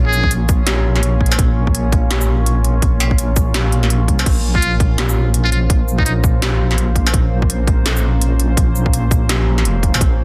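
A dark, heavy half-time drum and bass piece in Bb minor at 167 BPM opens on a deep, moody ambient pad holding a Bbmadd9 chord, with vintage 12-bit sampler grit and sidechain pumping, over an up-front, detuned wobble bass thickened by chorus and tube saturation. A hard-clipped electronic kick and an overdriven industrial kit of clanging snare, crisp hats, shaker, crash and struck metal drive a swung sixteenth-note feel. A buzzy trumpet with a metal mute plays a breathy, jazz-style line with scooped notes and light vibrato through dub echo, heard briefly at the start and again from 4.6 to 6.1 seconds, all within a dense, heavily limited modern mix with little room sound.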